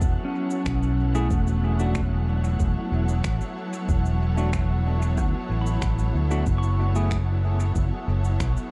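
A short cut of spacious, meditative ambient dub at 93 BPM opens on lush, bowed string chords and a twangy pedal steel guitar picking arpeggios in the background, its clean tone roughened by vintage 12-bit sampler grit and trailed by dub echo, over a growly, up-front fingered bass, a deep layered electronic kick and faint electronic cabasa and finger snaps. An airy, breathy wind-like noise texture hangs on a high F#, while a dark, clean semi-hollow guitar adds echoing stabs from 1.1 to 7.2 seconds. The harmony moves from F#m7 to a long E9sus4 and back, all set in a dark, warm production with light reverb.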